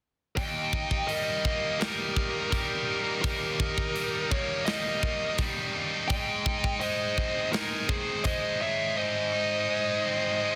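Aggressive and epic, this heavy metal passage sets a dark, distorted lead guitar melody with delay above a second high-gain lead line, while two bright, picked rhythm guitars, one heavy and one scooped, drive the low riff and a tight, up-front acoustic kit of kick, snare and hi-hat pounds along until it drops out at 8.4 seconds, the harmony shifting from Eb to Ab at 6.1 seconds within a small room and a dense, heavily limited modern master.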